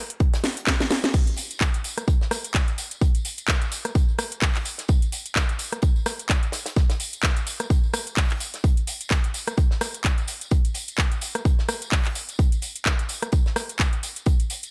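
A swung 128 BPM house groove in 4/4 opens this euphoric, feel-good drum excerpt, with a punchy, tape-warm electronic kick driving everything up front and a brief fill from 0.4 to 1.1 seconds. Layered alongside it, a house drum kit brings a cracking snare, metallic hi-hats, crash cymbal, handclaps and rim clicks, while a warm soul drum kit with a medium-tuned snare sits in the background with filtered, pumping hi-hats and a high-pass filtered snare. From 1.1 seconds a compressed, gritty tambourine, blended with maracas and a group handclap, shimmers behind the kit inside a small room.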